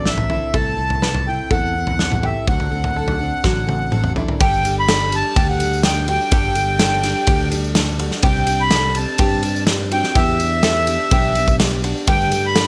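Hopeful and nostalgic, this indie folk passage from a longer piece moves at 125 BPM in a straight 4/4 in G major, its arrangement building as it goes. A reedy accordion carries the melody up front, its slow beating giving the tune a gentle shimmer, while a fingered electric bass holds the low end with a direct, warm tone. Behind them, a bright, full-bodied steel-string acoustic guitar picks out the accompaniment and an open-back banjo adds plunky, twangy fingerpicked arpeggios. A loose indie drum kit with a punchy kick, medium-tuned snare, ride cymbal and toms sits forward in a studio room, and a drum fill around 3.4 seconds leads into the second section at 4.4 seconds. There a very quiet, jingly tambourine joins, and at 12.1 seconds a soft, flute-like tonewheel organ with key click and slow rotary speaker slips in with sustained chords as the harmony returns to Gsus2.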